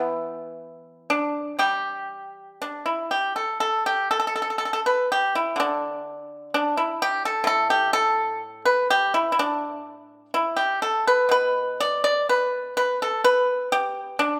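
A solo pipa, bright and percussive, sits up front in a moderate recital hall, its fingerpicked lines moving freely in an elegant, pastoral Chinese traditional mood across this short fragment cut from a longer piece, with a new passage opening at 3.6 seconds.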